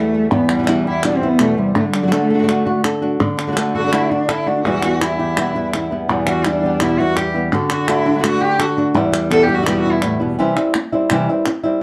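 A dark, warm studio sound with a moderate room reverb frames this fiery, mournful flamenco fragment, cut from a longer piece. Up front, a fingerpicked acoustic guitar carries the melody with audible finger squeaks, while an expressive solo cello sings a bowed second line with vibrato and portamento until 10.1 seconds, and a second fingerpicked guitar adds stabs over crisp, close palmas hand claps. The harmony rocks between two chords before moving to C at 10.4 seconds, opening a brief new section that runs to 11.8 seconds.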